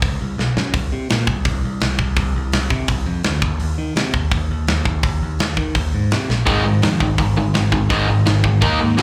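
A straight, driving punk rock beat opens this angry, aggressive fragment, with a tight metal drum kit and its medium-tuned snare and tight kick playing up front under a growly, punchy picked electric bass from the start, the drums tossing in a quick fill at 0.4 seconds and another at 6.3 seconds. At 6.5 seconds two picked electric guitars crash in on the riff, one overdriven and up front, the other distorted and sitting in the background, both bright and carrying a slapback echo. The whole thing sounds like a live club gig heard through the venue's PA.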